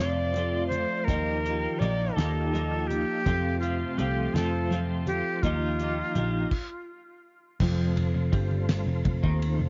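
Heard in a small, muffled room, this hazy, hypnotic psychedelic rock excerpt in 6/8 at 55 BPM sets a breathy, reedy jazz flute melody with tape echo, which ends at 6.9 s, over a twangy, double-tracked twelve-string electric guitar riff with tremolo, a round, foam-muted picked electric bass up front, a damped 70s drum kit with a fat snare and dark cymbals, very quiet soft-handed congas, and a smooth tonewheel organ holding chords in the background through chorus vibrato and a fast rotary speaker, all moving between F and Ebadd9 in F mixolydian before a stop at 6.5 s.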